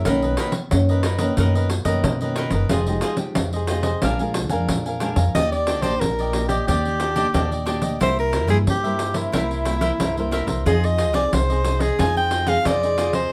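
Samba and choro at 90 BPM in a straight 4/4, this festive, lively excerpt opens with crisp, picked cavaquinho, full-bodied fingerpicked nylon-string guitar, a woody, thumpy pizzicato upright bass set up front, and a jingly, vintage-toned pandeiro, moving through Bmaj9, Fm9 and Bb7. At 5.3 seconds a warm soprano saxophone takes the solo melody up front, jazz-styled with a soft attack, subtone and light vibrato, as the harmony turns to Ebmaj7, C7 and Fm7. A moderate studio ambience surrounds the acoustic group.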